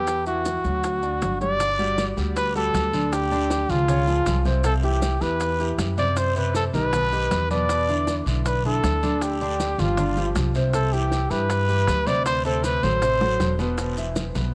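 A straight 4/4 pulse at 158 BPM drives this sophisticated Afro-Cuban jazz excerpt. Ringing congas sit in the background, very quiet round, low-tuned bongos sound close and dry under soft hands, and grainy, band-limited maracas add a vintage texture, with a raspy guiro joining at 1.6 seconds. Up front, a woody, dark upright bass plays pizzicato low in the register, while a polished, present grand piano supplies accompaniment through harmonies such as Em9, Cmaj7, B(b9b13) and Baug. The mellow trumpet carries the solo melody with vibrato and a smooth top, staying in a compact middle range until it stops at 13.6 seconds. A drum fill arrives at 13.2 seconds, and the whole mix sits in a moderate plate reverb that gives it a long tail.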